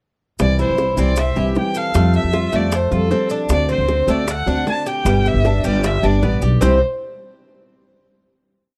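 This dry, close recording has the intimate feel of a 1970s studio. It holds a short, complete piece of sunny Cuban son in the guajira style, in C major at a brisk 154 BPM in straight 4/4. Out front, a single bowed violin sings hook-like motifs with rich vibrato and expressive portamento. Beside it, an upright bass on gut strings plays a woody, thumpy syncopated figure. Underneath, a classical nylon-string guitar is thumb-plucked and strummed with muted slaps, and a metallic Cuban tres joins at 0.6 seconds with a picked, arpeggiated guajeo on its doubled strings. Tight, high-tuned bongos keep steady eighths in the background alongside grainy maracas. The verse moves through C, Fadd9, D7 and G before the ensemble settles on a final C chord at 6.6 seconds.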